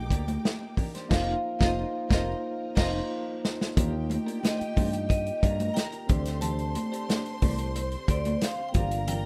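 A ringing, metallic vibraphone struck with hard mallets carries the melody, with medium motor vibrato, over a lush 1970s-style soul groove that feels silky and cinematic in this short excerpt cut from a longer piece. Growly fingered bass and a tight, dark-cymballed soul drum kit sit up front, while bowed symphonic strings add a smooth second line, a mellow tine electric piano and high-tuned congas sit in the background, and a very quiet clean semi-hollow guitar riff and sawtooth string machine pad fill out the harmony from Ebmaj7 toward Gm7. A band accent arrives at 1.1 seconds, and a drum fill runs from 2.4 to 3.8 seconds into the second section, all in a dry, rough home demo mix.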